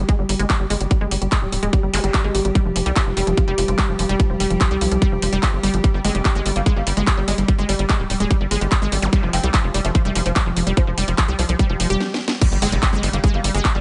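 A dry, up-front mix carries this intense, driving psychedelic trance excerpt, where a tight, punchy sequencer bass and a tape-warm electronic kick push beneath a bright, detuned unison pluck riff with digital delay and sidechain pumping, an overdriven techno kit of cracking snare, handclaps, hi-hat and crash cymbal, and a morphing wavetable pad holding sustained chords in the background; a distorted, metallic FM wobble bass enters at 6.0 s, very quiet zaps and swells flicker through, and a drum fill and stop at 12.0 s give way to a drop and impact at 12.4 s.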